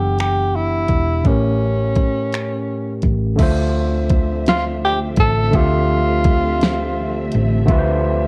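A breathy tenor saxophone carries the melody from the very start, with a subtone, scooped notes and vibrato in a jazz-style solo voice, set up front with a slapback echo. Beside it, an overdriven tine electric piano sounds bright, barky and gritty through a combo amp, and a round, dark hollow-body short-scale electric bass plays fingered underneath. A smooth, produced R&B drum kit joins at 0.2 s, with a knocking kick, fat snare, warm hats, finger snaps and crash cymbal, sitting up front as if re-recorded in a small room. This slow six-eight R&B groove moves at 56 BPM, shifting from Em9 to A7b9 before settling on Dm9 at 3.4 s, where the music turns to D minor and a lush symphonic string section enters in the background with expressive, bowed chords and a smooth top. The whole piece is wrapped in light reverb and the worn, warbling pitch drift of old cassette tape, giving this cut from a longer piece a yearning, late-night mood.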